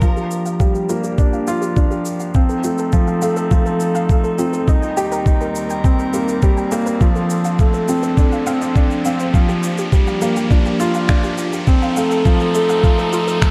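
Hypnotic and moving, this piano and strings electronica excerpt builds throughout as a felt-muted upright piano with audible action noise plays an intimate, up-front riff over a thumpy, pitched-down electronic kick drum, while a floating sul tasto string quartet holds sustained chords under a filter sweep, a warbling, lo-fi pluck drifts through arpeggios in the background with chorus, tape echo and sidechain pumping, overdriven electronic shaker and finger snaps tick in the dark echo-chamber ambience, and an electronic riser enters at 4.8 seconds.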